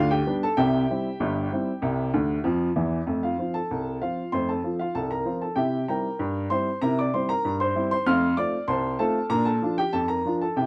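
A straight 2/4 pulse at 96 BPM drives this cheerful, playful ragtime piano fragment in F major, tuned to A4 = 439 Hz and cut from a longer piece. A solo upright piano with a woody, natural tone and long sustain sits up front, ranging from G1 to F6, opening on G7 and C chords and adding a fill from 2.1 to 3.1 seconds. A new section then begins at 3.1 seconds, moving through F, C7 and back to F before touching Bb, all captured in a dry, close 1970s-style studio sound with light reverb.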